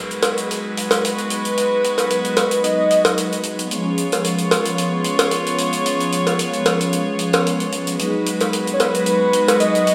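A thick, detuned unison lead with dub echo carries the melody from 1.0 to 3.4 seconds and returns at 8.7 seconds, over round, chorused synth brass with a filter sweep and tape echo, bowed gut-string chords from an up-front studio string section, a natural small-room hi-hat and a prominent cowbell, giving this sleek, groovy, lightly swung nu-disco excerpt its lift as G#m7 moves to C#7 and back inside a wet plate reverb.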